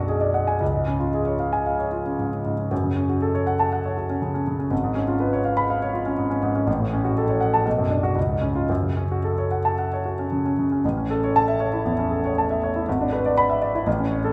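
Agitated and stormy, this short cut from a longer classical virtuoso piano study in 4/4 surges with rubato at 110-124 BPM, its solo concert grand sounding intimate, natural and up front with deep bass and audible action noise as it ranges from G#1 to B5, driving through F# minor harmony before turning to A major at 10.8 seconds, all bathed in the wet reverb of a recital hall.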